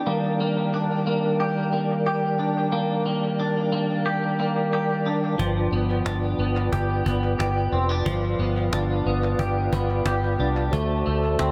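Dream pop at 90 BPM in 4/4 with a straight feel, this blissful, floating excerpt drifts through Ebmaj7, G7 and D7 chords. A mellow, flute-like tonewheel organ holds sustained chords up front, its chorus vibrato and stopped rotary speaker adding a soft shimmer, with a touch of key click. Alongside it, a clean electric guitar picks twangy, scooped arpeggios, compressed and colored by analog chorus and dub echo. At 5.4 seconds a vintage muted fingered electric bass arrives, dark, round and punchy from its foam mute, together with a woody cajon that sits in the background with faint snares and hard hands, its hits trailed by dub echo. Light reverb and digital ambience wrap the echo-heavy mix in a hazy, spacious glow.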